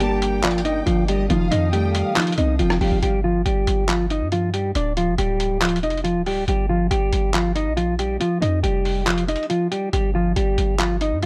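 A half-time trap groove at 139 BPM in 4/4 anchors this dark, menacing hip hop cut, taken from a longer piece, with a boom bap sampler-style kit of handclaps, hi-hat and rim click that sounds pitched down, compressed and gritty, and a hard-hitting 808-style bass sitting up front with a punchy, heavy, sine-based tone and a fast attack. A clean electric guitar carries the melody up front throughout, fingered and softened by a low-pass filter, over chords that move from Gm and F7 into Ebadd9 voicings, Dm and back to Gm. For the opening 3.0 seconds, a felt-muted upright piano adds boxy, intimate accompaniment with short sustain, while a lush violin section with soft attack and analog delay traces a second line in the background. A bowed, darker symphonic string section holds sustained chords with vibrato alongside them over those same seconds. From 3.0 seconds the piano and strings drop away, leaving guitar, bass and drums to carry the rest in a dry, studio-reverbed mix with a hardware-recorded grit.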